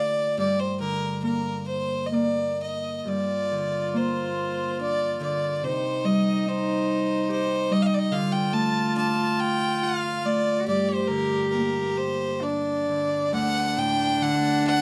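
In a rubato 3/4 at 64-74 BPM, this haunting, longing Celtic slow air in G minor, cut from a longer piece, sets a bright, biting fiddle melody with light vibrato and an airy bow up front over ringing, fingerpicked Celtic harp, while a rich, reedy gut-string cello adds a close second line from 3.1 s, heard in a moderate studio reverb.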